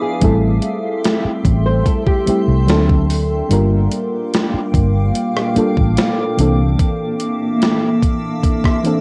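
A lightly reverberant home cassette recording of a longing, sensual contemporary R&B excerpt at 73 BPM in G dorian, where a soft, warbling FM electric piano with chorus and a cloudy, evolving granular pad carry the Am7, D7b13, Gm7 and C13 chords, a boxy flamenco guitar plays thumb-plucked arpeggios with finger squeak and tape echo until 2.7 s, a round, foam-muted fingered bass sits up front until 6.7 s, and a thumpy gated 80s drum machine with a gated reverb snare briefly drops its kick.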